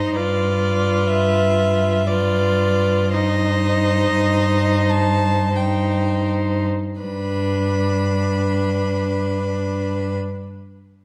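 A moderate recital-hall reverberation surrounds this short excerpt from a slow, romantic string quartet movement in G major, moving in a rubato 3/4 between 39 and 68 BPM and slowing through its first 7 seconds. A clear, smoothly bowed first violin carries the serene melody with vibrato above a close-sounding second violin line with light vibrato, while a rich viola fills in the accompaniment and an up-front, focused cello holds G2 in the bass. The harmony passes from G7 to Cm/G before settling on G at 7.0 seconds.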